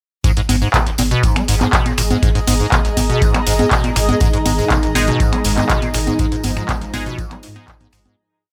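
This short, hypnotic and gritty acid house piece opens straight into its drop: a squelchy, resonant acid line with accents and slides, a deep four-on-the-floor kick, and a booming, dry drum machine carrying metallic hats, handclaps, finger snaps and congas up front, while a jingly tambourine plays sixteenths in the background. A round sine sub bass soon joins with off-beat notes, and a cloudy granular pad drifts in above with blurred, slowly shifting chords soaked in its own reverb. The acid bass has tube saturation, a touch of chorus and dub echo, and it pumps against the kick along with the sub and the pads. At 4.2 seconds a detuned sawtooth analog pad adds sustained chords with a moving notch, and at 5.0 seconds sparse, nasal, band-passed chord stabs echo through, one shape moved in parallel. A fade-out begins at 5.5 seconds, closing the piece in a moderate studio reverb.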